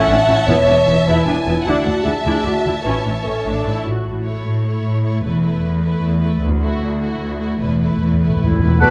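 In a brisk 152 BPM 3/4, this triumphant, heroic adventure film cue in A major, cut from a longer piece, sets lush vibrato violin sections on melody and second line over dark, woody violas, dark cellos and smooth, distant double basses, with close-miked French horns sustaining chords until 3.6 s and returning at 8.4 s, background timpani on E2 playing a fill from 7.6 s, and a mellow clarinet, hollow flute and soft oboe adding brief second lines in the final moments, all bathed in a wet recital hall reverb.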